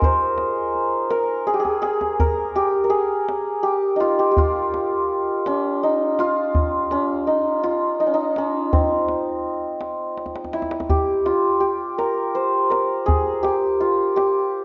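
Santur and tombak open together at once in this slow, longing Persian modal piece, moving at 55 BPM in a straight 6/8 with a melancholic cast. The santur carries the melody up front, its hammered strings bright, shimmering and ringing between C4 and C5, set in dastgah shur on C. Beside it, the tombak sits close and dry, its deep, soft-handed tone adding a gentle pulse, and it breaks into a short fill at 1.5 seconds and again just before the turn. At 10.9 seconds the music shifts into a new section as the mode moves to dastgah homayun on C, giving the melody a changed colour while the same two instruments carry on. The sound is intimate, with light reverb and softened highs, and the passage ends at 14.6 seconds as a fragment cut from a longer piece.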